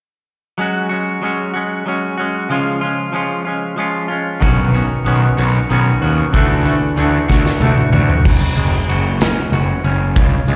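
Cathartic and bittersweet, this short cut from a longer quiet-loud alternative rock piece sways in 6/8 at 63 BPM, opening at 0.6 seconds with a twangy, fingered clean electric guitar arpeggiating through F#sus2, C#, Badd9 and Dadd9 with slapback echo, before a growly fuzz picked electric bass and a big rock drum kit with punchy kick and bright cymbals crash in at 4.4 seconds, a drum fill carrying it back to F#sus2 at 8.3 seconds, all heard as a live gig through the venue's PA with recital hall reverb.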